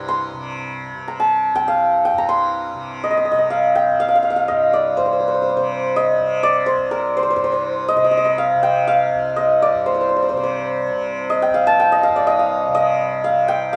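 Solemn and longing, this Hindustani classical excerpt in raga Bhimpalasi on C moves at 123 BPM in a straight 5/4, tuned to A4 = 437 Hz. A hammered, ringing santur carries the melody up front from start to finish, shifting into a new section at 5.0 s, while a softly plucked tanpura holds a low, buzzing, shimmering drone far beneath it. The two sound like they are playing live together in one studio room with moderate reverb.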